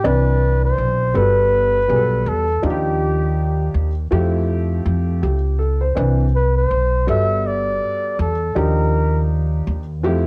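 Warm and relaxed, this jazz-hop excerpt settles into an unhurried 81 BPM groove in 4/4, with a lazy swing on the sixteenths and a tuning set slightly low at A4 = 436 Hz. A breathy, close-miked flugelhorn carries the solo melody up front in a jazz style, its light vibrato giving the line a gentle shimmer before it drops out at 9.3 seconds. Beneath it, a dark upright piano supplies intimate, smooth accompaniment with a vintage character and audible action noise. A pizzicato upright bass on steel strings sits up front with a woody, acoustic tone, anchoring the low end. The harmony drifts through lush major-ninth chords, Cmaj9, Gmaj9, Ebmaj9 and Fmaj9, before circling back. Light studio reverb and the cassette-tape color on the horn and piano give the whole home-recorded excerpt a soft, lo-fi glow.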